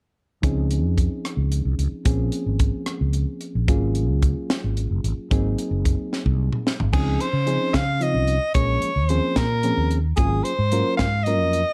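A dark, warm small-room sound with light reverb frames this funky, driving electric jazz fusion excerpt in a 6/8 lilt, built on a looping progression of Dbmaj9, Bbm9, Ab13sus4 and Ab9 chords. A tight, acoustic funk kit with a high-tuned snare and a rolled-off top sits up front beside a round, amped fretless bass, while a reedy, barky electric piano with light overdrive comps underneath. After a drum fill at 6.1 seconds, an edgy soprano saxophone enters at 6.9 seconds with a punchy, forceful jazz solo full of vibrato.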